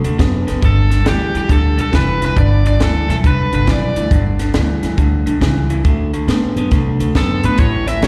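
Heard live through a venue's PA in a recital-hall space, this gritty, rollicking electric blues shuffle at 138 BPM swings over D, G7 and D7: a lo-fi, slightly broken-up guitar riff with slapback echo rides a dry cocktail kit's punchy kick, hi-hat and high-tuned snare and a woody, thumpy pizzicato upright bass up front, while a biting overdriven lead guitar with slapback echo and analog delay carries the melody from 0.6 to 4.1 seconds and returns at 7.2 seconds.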